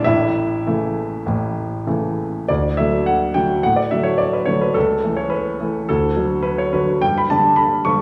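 A clear, intimate grand piano opens this passionate romantic character piece, playing solo with a flexible rubato feel that spans from deep bass to bright upper notes across the full 8.0 seconds. The instrument sits up front with audible action noise and a short, natural sustain, set inside the lush reverb of a recital hall. Cut from a longer piece, the music shifts into a new section at 2.5 seconds, its warm harmonies carrying the phrase forward.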